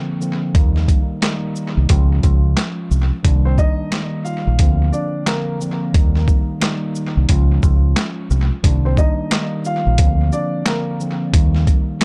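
Dark and moody, this boom-bap hip-hop excerpt swings at an easy pace. A mellow tine electric piano opens with cassette-tape grit and tape echo, soon joined by a gritty, pitched-down sampler-style drum kit with a thumpy kick, medium-tuned snare, handclaps, hi-hat and shaker, all overdriven and up front, alongside a round, deep dub fingered electric bass. From 3.5 seconds a woody upright piano carries the melody through tape echo, while a very quiet, close finger snap enters at 3.9 seconds, all in a dry, echo-heavy mix that cycles through Bbadd9/D, Eb, Db and Cm7.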